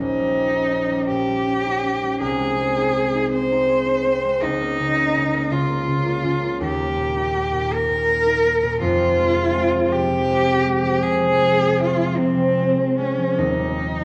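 A tender cello melody with vibrato and portamento leads this short romantic classical duo at 54 BPM in a rubato 12/8, over a ringing, fingerpicked concert harp accompaniment that moves from Eb7/Bb through Ab/C, Bbm/Db, Eb and Fm back to Eb, all heard through a moderate stage reverb and the worn, warbly pitch drift of old cassette tape.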